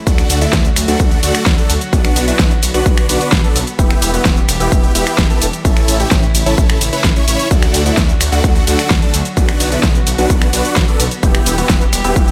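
A punchy, layered electronic kick sits up front throughout this 12-second cut from a longer festival progressive house track, driving a straight pulse with an uplifting, triumphant mood. Over it, a huge, euphoric supersaw lead plays a riff, its detuned sawtooth unison bright and compressed, coloured by a phaser and trailed by dub echo as it pumps to the sidechain along with the bass and strings. Beneath, a thick, detuned saw bass with a sine layer adds saturated weight, treated with chorus. The big-room drum kit brings an overdriven, huge snare along with finger snaps, hi-hat, ride cymbal and shaker, set in studio reverb. An intimate chamber string section, bowed sul tasto with light vibrato and a soft attack, holds sustained chords in the background as the harmony cycles through D, Bm, Em and A.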